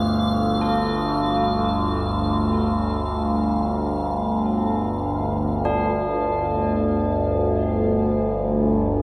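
Drenched in a huge ambient reverb, this unsettling dark ambient drone excerpt drifts in free time over a Gsus2 sonority, anchored by an up-front overtone-sweeping drone of resonant sawtooth and sine tones with moving overtones, while solemn, metallic tubular bells ring out arpeggios through diffuse delay and shimmer, an icy, crystalline glass pad glints high above until 5.7 seconds, and a barely audible, warbling vintage pad of detuned sustained chords enters at 5.6 seconds.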